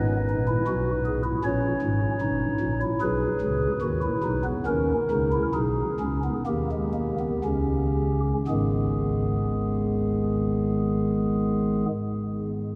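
A cathedral's long, wet reverb, with a decay of about 6.7 seconds, surrounds this solemn, contemplative passage from a longer baroque-style three-part fugue in G# minor. A single pipe organ voiced on stopped flute stops carries it alone and sits up front, its tone soft and hollow with a gentle chiff at the start of each note. The organ spans a range from G1 up to C#5 within its mellow baroque voicing. In a straight 4/4 between 56 and 80 BPM, the music gradually slows through its opening stretch, moving through G# minor and D#7 harmonies, including a G#m/B colouring. A second section arrives at 8.5 s on a return to G# minor, and the organ falls silent at 11.9 s, leaving the stone-like resonance to carry on.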